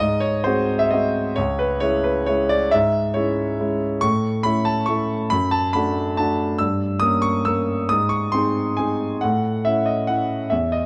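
Nostalgic and bittersweet, this brief passage cut from a longer classical piano waltz in 3/4 features a solo grand piano, present and polished up front, ranging from C#2 to E6 with a supple rubato feel, all framed by light reverb and a dark, warm production across its 10.9 seconds.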